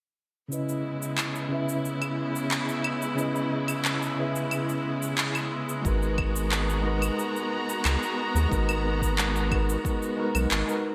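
Polished 1980s-style digital production with a moderate plate reverb gives this wistful, relaxed sunset chillout passage, cut from a longer piece, its sheen. A mellow tine electric piano, sounding through its built-in speakers, carries the accompaniment with a filter sweep and delay, while a bright, close string section holds bowed chords with vibrato, and overdriven electronic cabasa, handclaps and claves sit up front in a gated reverb. At 5.8 seconds the harmony moves from C#m7 to G#m9 as a round analog bass, a dark, plucky blend of square and sine, and a deep, overdriven, layered electronic kick drum join.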